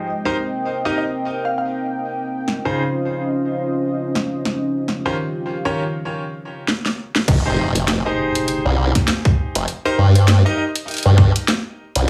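Glitch hop in F minor at 100 BPM with a swung 16th feel, gritty and funky, this excerpt opens on a dark, moody analog pad and bright, brilliant grand piano stabs pumping under sidechain, a woody wave-folded pluck melody flickering in the background, an overdriven drum kit with cracking snare and bright hats entering at 2.5 s, and a fill leading into the drop at 7.3 s, where a tight electronic kick, a background impact and an up-front formant-sweep wobble bass arrive over Fm9 and a rootless Cm, all in a heavily compressed, radio-like mix with moderate studio reverb.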